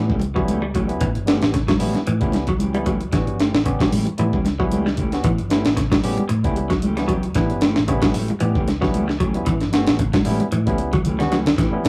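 A rough rehearsal-room recording with tube saturation and a moderate studio reverb gives this short afrobeat excerpt a gritty, lived-in character. At 114 BPM in 4/4, with a light 16th-note swing, it sits on a single A7 chord in A mixolydian and feels hypnotic and driving. Up front, a compressed, sampler-style breakbeat kit pairs a thumpy kick with a high-tuned snare and hi-hat, and it breaks into a drum fill from 10.5 to 11.6 seconds. Beneath it, a dark, round, punchy hollow-body short-scale bass is fingered through an amp, while bright, thin-skinned congas sit close but in the background. A clean, picked electric guitar plays arpeggios bathed in spring reverb, and a mellow, fingered second guitar adds dusky stabs further back. A barky tine electric piano, played through a combo amp, fills out the accompaniment with its biting, sparkling tone.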